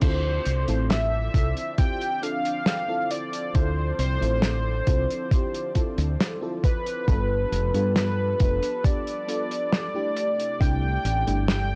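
Vaporwave at 68 BPM in D dorian, nostalgic and woozy, where a velvety, up-front synth lead with chorus, tape echo and vibrato sings over a warbling FM electric piano, a thick, airy background unison pad and a round, hollow-body fretless bass, while an overdriven, thumpy electronic kick and a mid-forward soul kit with dark cymbals drive the Dm9 to G9 to C69 progression through a gritty cassette-tape sound in a small room.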